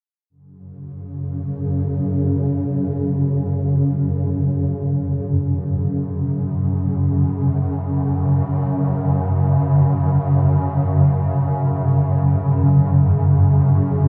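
A swarming, detuned drone carries this dark, desolate ambient piece alone, entering at 0.8 seconds and sustaining until the end at 14.1 seconds within a low range from F#2 to C#3. Its nasal, granular tone is built from unison sine voices with a moving notch, and it feels tense and constantly evolving as it sits up front. Notes arrive with a slow attack and fade on a long release, and the part's built-in reverb and diffuse ambient delay add a hazy trail. The harmony rests on an F#5 chord from 0.3 seconds, unfolding in free time with tuning set to A4 = 443 Hz. A wet cathedral reverb with a 5.2-second decay places the sound in a vast, echoing space, and the passage is cut from a longer piece.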